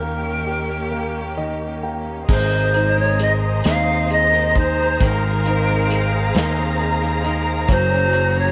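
A bright, reedy pan flute with vibrato and a soft attack carries the aching, dramatic melody of this slow six-eight pop ballad excerpt at 44 BPM, over clear, woody upright piano that adds a fill from 0.9 to 2.3 seconds, lush bowed strings, and a growly fretless bass up front, while a very quiet picked steel-string guitar and an acoustic drum kit played with bundle sticks join at 2.3 seconds, all in a moderate spring reverb as the chords move from Eb7 to Abadd9 and Gbadd9.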